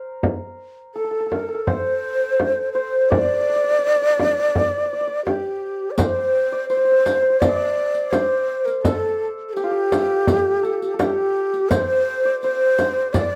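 A moderate studio reverb gives this short cut from a longer Persian modal piece a sense of space. Set in D dastgah shur at 84 BPM in a straight 4/4, the music feels longing and hypnotic. The breathy ney carries the melody up front, its end-blown reed-cane tone warm and expressive, with vibrato and tongued notes, entering at 0.9 seconds. The santur plays a second line beneath it from the very start, its hammered strings shimmering and ringing. A small, bright frame drum sits close and up front, joined at 6.0 seconds by a riq whose bright jingles and hard-handed strokes carry a live-room character.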